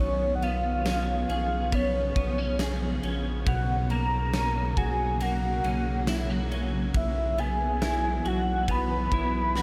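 A soft, octave-layered synth lead sits up front in this dreamy, floating dream pop excerpt, its round, dark tone carrying the melody through chorus, tremolo, vibrato and tape echo. Beneath it, a saturated sub bass anchors the low end with a deep, thick presence, while a granular cloud pad holds blurred, evolving chords in the background through its own built-in reverb. A clean electric guitar adds picked arpeggios with a dark edge, coloured by ensemble chorus and tape echo. The arena drum kit enters at 0.4 seconds with a punchy kick, fat snare, bright ride cymbal and tambourine in a hall-like space. At a slow 69 BPM in 4/4, the harmony drifts from C#7/B to F#/B at 3.5 seconds and then to Esus2/B at 6.9 seconds, all over a sustained B in the bass, with a light small-room reverb framing the whole piece.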